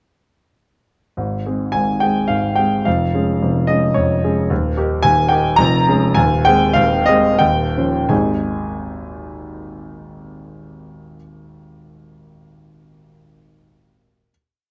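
In a rubato 3/4 lilt moving between 82 and 112 BPM, this brief, lyrical romantic character piece for solo grand piano in A-flat major sets a clear, up-front single-line melody over octave bass and chords, passing through D-flat and a rich E-flat 13th before slowing from 3.7 to 8.1 seconds and settling onto a final A-flat chord held until 12.1 seconds, all within a dark production and moderate studio reverb.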